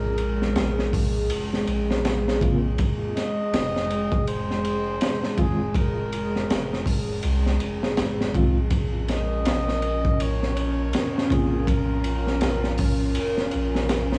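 A veiled, bucket-muted trumpet with scooped notes opens this brooding, smoky trip hop excerpt in Bb minor at 81 BPM, floating over a detuned analog pad treated with chorus and phaser and a round, soft dub sub bass, while a crunchy, gritty breakbeat kit with a high-tuned snare and dark cymbals sits up front from 0.2 seconds with a swung 16th-note feel. At 2.4 seconds a reedy electric piano with fast tremolo and tape echo joins the accompaniment, and the trumpet's dub echo trails its melody as the chords move from Fm to Bbm. Near the end a very quiet, nasal string-like drone emerges at 10.8 seconds, and the whole piece carries the hazy character of a home cassette recording in a small room, dusted with vinyl crackle.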